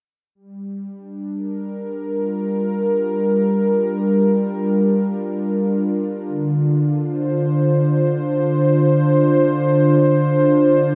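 Floating in free time, this meditative, spacious ambient fragment in G minor, tuned to A4 = 443 Hz, centres on a warm analog pad holding sustained chords from 0.3 to 10.9 seconds. Its smooth, detuned sawtooth tone swells in with a slow attack, sits up front with chorus and a filter sweep, and moves from Gm7 to Dm7 at 6.3 seconds. A huge ambient reverb with a 4.1-second decay surrounds the sound.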